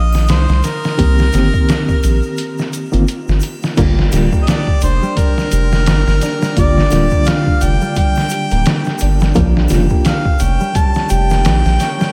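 Brooding and melancholic, this trip hop fragment sets a clear, close-miked harmonica melody with light vibrato and scooped notes, roughened by 12-bit sampler grit and dub echo. It rides over a deep, round dub sub bass, a compressed, pitched-down sampler drum kit with a thumpy kick and muffled tone, and a faint triangle and egg shaker in the background. A reedy, worn, slightly out-of-tune electric piano enters at 1.0 seconds with tremolo and tape echo, a break arrives at 2.4 seconds, and from 3.8 seconds a mellow, thumb-plucked concert harp adds ringing arpeggios with the same grit and dub echo, as the chords move from Cm7 to Gm7 and then Bbm inside a light studio ambience.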